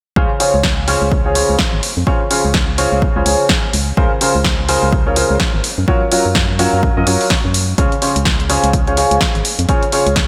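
A dreamy mix soaked in lush hall reverb gives this short cut from a longer piano house track a euphoric, feel-good glow. A warm, polished grand piano sits up front with long sustain, playing a riff dressed in lush chorus, diffuse ambient delay and sidechain pumping over chords that move from Dbmaj7 through Bbm9/Db and Gbmaj7 back to Dbmaj7. Beneath it, a hollow, organ-like FM bass with a fast attack and dark, decaying notes also pumps with the sidechain. A punchy electronic kick, re-recorded in a large room, begins at 0.2 s, and an analog drum machine joins at 0.4 s with hi-hat and a forward snare over a swung 16th-note groove in 4/4. The piano drops out at 10.0 s, just before the bass and drums finish.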